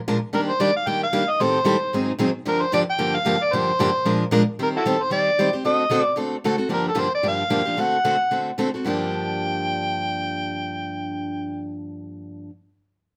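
A moderate club reverb gives this short jazz excerpt its room sound, with both instruments placed up front. At a brisk 225 BPM in G minor, it swings with a bittersweet mood. An overdriven, amplified harmonica carries the melody from 0.3 seconds, its gritty, punchy tone marked by light vibrato, tongue slaps and scooped notes in a soloing jazz style. Beneath it, a picked steel-string acoustic guitar with bright, fresh strings supplies the accompaniment, and its finger squeaks are audible. The harmony moves through chords such as Ebmaj7, Am7b5, Gm7 and D7b9 before arriving back on Gm7 at 8.9 seconds, and the guitar rings on alone until 12.5 seconds.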